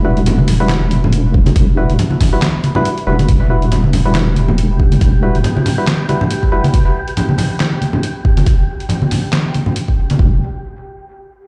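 Deep dubstep at 139 BPM in E minor, this excerpt moves with a swung, half-time feel and a cavernous, heavy mood, resting on an Emadd9 chord. It opens on a drop, where a dark, wobbling bass of detuned square and sine tones sits up front with chorus, while a hollow, percussive organ stab decays into dub echo between G3 and B4. Gritty, pitched-down sampler-style drums with handclaps, hi-hat and a medium-tuned snare arrive almost at once, joined by bright, band-limited congas with hard hands and their own dub echo. A layered, deep electronic kick punches in at 1.3 s, drops out briefly before 3.3 s and returns at 3.3 s, and an airy, breathy wind-like texture on G4 enters at 3.9 s, bathed in its own reverb. The bass falls away at 5.4 s and the organ at 6.7 s, leaving drums, congas and the drifting texture to carry on until the bass reappears for a brief moment at 10.2 s over the final unchorded stretch. 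The whole mix has the boom of a big sound system in a bare room, with a large studio reverb around it.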